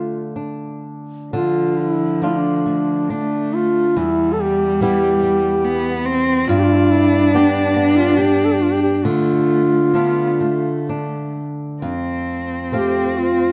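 A close, detailed recording with light reverb opens this mournful, haunting Celtic slow air in 3/4, cut from a longer piece and moving with a rubato feel at roughly 58-74 BPM in D dorian. A dark duduk carries the melody up front from the first moment, its folk-style vibrato giving the line a dark, grieving voice. Beneath it, a fingerpicked flamenco guitar supplies accompaniment throughout, its fresh strings sounding warm and catching an occasional finger squeak. At 1.3 seconds a single bowed cello enters with a second line, played sul tasto with a soft attack, smooth top and intimate vibrato, touched by a slapback echo. The harmony moves from Dm through Em and G back to Dm before shifting to F as a new section begins at 11.8 seconds.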